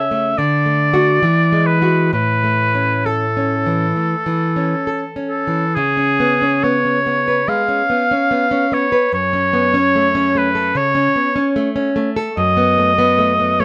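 Closely miked and dry, the recording puts a clear oboe and a bright, fresh-stringed nylon-string guitar up front in fine detail. This serene, romantic duo moves in a flexible rubato around 65-75 BPM in 4/4, with the oboe singing the melody with light vibrato in a classical style while the fingerpicked guitar supplies the accompaniment throughout. The harmony travels from D through E9 and A, then shifts at 5.7 seconds to a second passage built on C#7, F#m and B7/F#, in a short section taken from a longer piece.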